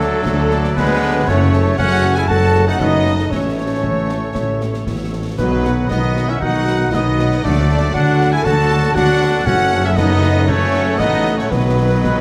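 A triumphant, soaring passage of heroic adventure film score opens at 118 BPM in 4/4, with a close, vibrato-rich studio violin section carrying the melody over a full orchestra. A clear clarinet, a background oboe and a lush, very quiet symphonic violin section trace second lines while violas fill in; a tight French horn section holds sustained chords above distant, roomy trombones, and a mellow trumpet punches out stabs. Woody cellos, a rich double bass section and a smooth-topped tuba anchor the bass, and concert snare, bass drum and dark clash cymbals sit in the background, with close, dry timpani joining at 5.4 s and again from 9.5 s, and an airy, hollow concert flute slipping in at 12.0 s as the D–F#m–A–B progression unfolds in a moderate scoring-stage reverb over a faint mains hum.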